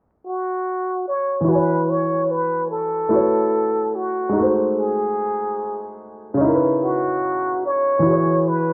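This hip hop fragment, cut from a longer piece, has a cosy, nostalgic mood and a lazy swing in its 4/4 groove. A trumpet with a plunger mute carries the melody from 0.3 seconds, playing in a breathy, whispered jazz style with wah-wah colour, vibrato, soft attacks and scooped notes, up front and intimate. At 1.4 seconds a felt-muted upright piano joins as accompaniment, its thin, mellow felt tone sitting close to the listener with a cassette tape character. The chords move through E69, A69, G#7b9 and C#m9 before settling back on E69, while a filter sweep runs from 1.5 seconds to the end. Vinyl crackle, a low-pass filter and a wet studio reverb give the whole track a soft, dusty glow.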